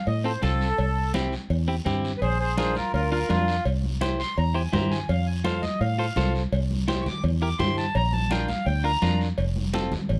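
A reedy, airy accordion solo opens this festive, joyful cumbia at 168 BPM in F major, played up front over a round, dark fingered electric bass, clean, picked electric guitar, and background percussion of ringing, saturated cowbell and timbales and bright, distant congas, joined by a raspy guiro, all moving through F, C and Bb chords with light reverb.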